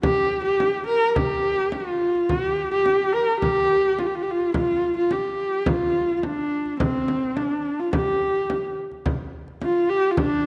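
A straight 4/4 pulse at 107 BPM underpins this vast, solemn Mongolian folk piece in G yu mode, where a single up-front horsehead fiddle sings a husky, expressive bowed melody full of vibrato and portamento over a deep, close and dry frame drum struck with hard hands, the recording framed by a wet scoring-stage reverb before the music shifts into a new section at 9.0 seconds in this brief cut from a longer work.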